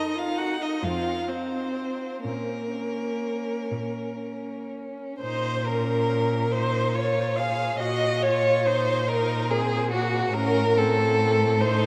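In a slow, rubato 6/8 that drifts between 39 and 49 dotted-quarter beats per minute, this solemn, elegiac movement for string quartet unfolds in Bb minor, a fragment cut from a longer piece. The first violin carries the melody with a focused, vibrato-laden tone and a smooth top, ranging from Bb3 up to Gb5, while the second violin sits up front with a warm, expressive second line marked by soft attacks and sliding portamento. The viola supplies a rich, even accompaniment heard close by, and the cello, also up front, anchors the bass between F2 and Bb2 with a rich, focused vibrato tone and a smooth top. All four players bow throughout the full 11.9 seconds, and the harmony moves from Ebm/Gb through F5 to a long-held Bbm before turning to a rootless F(b13)/A at 10.3 seconds. The quartet sounds set in a vast cathedral whose 5.6-second reverb washes over the phrases, and a second section begins at 5.2 seconds.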